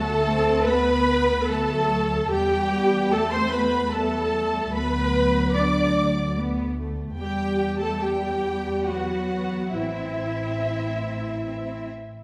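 The recording sits in a wet scoring-stage reverb that lends this short orchestral film cue a spacious, enveloping glow. It is a bittersweet, sorrowful passage in three, with uneven, rubato timing. The most prominent part is an intense, vibrato-rich viola section carrying the accompaniment up front. Beneath it, a mellow French horn section holds sustained chords, and two lush violin sections sit in the background: one with a soft attack shapes the expressive melody, while a more focused one adds a second line. A smooth, even cello section and a woody double bass section anchor the bass, the basses sounding until 12.1 seconds after the other parts fall away at 11.9. The harmony moves from D6 through Em, Bm/D and Em before reaching Am, in a passage taken from a longer piece.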